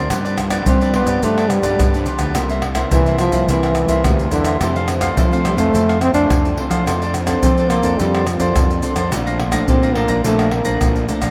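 Samba and choro in F major at 106 BPM, sunny and lively, built on crisp picked cavaquinho, fingerpicked classical nylon-string guitar in the background, a dark, round, punchy fuzz-overdriven electric bass, and up-front maracas, deep surdo, pandeiro and tamborim played with soft hands, while a mellow, breathy trombone with vibrato carries the jazz-style melody from 0.7 seconds and a second, scooped trombone line joins briefly at 4.0 seconds, all over a G7–C7–Fmaj7–Dm7/F–Bbmaj7 progression bathed in a huge, echoing reverb in this cut from a longer piece.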